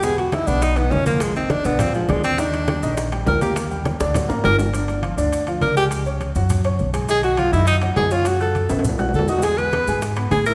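Sunny and lively, this short cut from a longer Afro-Cuban jazz piece moves at a brisk 204 BPM in straight 4/4. A clear, up-front tenor saxophone solos with vibrato and scooped notes over a polished, woody upright piano and a dark, thumpy pizzicato upright bass, while low-tuned congas played with soft hands and ringing metal-shell timbales sit in the background, joined by grainy maracas. Tight, high-tuned bongos play very quietly, dropping out at 4.7 seconds and returning at 9.4 seconds, two short drum fills punctuate the groove, and a recital-hall reverb lends the ensemble a spacious, church-like glow.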